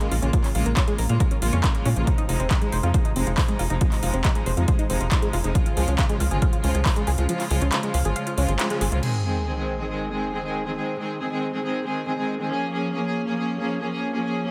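Euphoric, soaring uplifting trance at 138 BPM in Ab major, cut from a longer piece, where lush bowed strings with vibrato hold sustained chords through the full 14.5 seconds over a tight sawtooth sequencer bass, a wave-folded arpeggiated synth with chorus, phaser and dub echo, a punchy tape-warm kick that falls away at 7.3 seconds, and a layered big-room kit of crash, handclaps and metallic hats, before a band accent at 8.6 seconds and an electronic sub drop at 9.0 seconds open onto an Ab chord carried by the strings.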